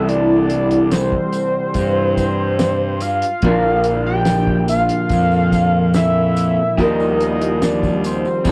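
A straight 4/4 pulse sets up this trippy, kaleidoscopic psychedelic rock passage, cut from a longer piece, as a cloth-damped, thuddy drum kit with a fat snare and tight kick joins at 0.1 seconds. A jingly tambourine sits in the background from 0.5 seconds. A slightly broken-up electric guitar through a small old amp plays a picked, compressed riff coloured by phaser, while a round, fuzzed, overdriven fingered bass sits up front beneath it. Above them a fat analog lead carries the melody with detuned sawtooth and square tones, a sub octave, a filter sweep and vibrato, all over a rough rehearsal-room sound with tube saturation and a C6, Bb and Ebadd9 progression.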